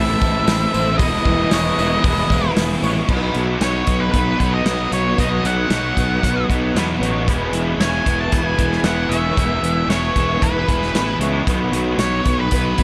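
A hazy, blissful wash of light reverb and small-room ambience surrounds this short cut from a longer shoegaze and dream pop track, rooted in rock with a straight 4/4 feel. A dark, distorted octave-fuzz lead guitar carries the melody up top, while two overdriven guitars play riffs beneath it: one is picked and treated with analog chorus, and the other is crunchier, set in the background with reverse reverb. Further back, an electric guitar through a small old amp picks slightly broken-up, lo-fi arpeggios coated in ensemble chorus and analog delay, and a growly fingered bass with fuzz and overdrive anchors the low end. A sweeping resonant pad of sawtooth and triangle waves, wave-folded and treated with chorus and phaser, holds sustained chords only until 3.1 seconds, when the harmony moves from Am and Emaj7 onto B. The loose indie drum kit is acoustic, with a tight kick, a medium-tuned snare and a rolled-off top, and it comes in at 0.2 seconds alongside a jingly, very quiet tambourine that drops out at 3.0 seconds.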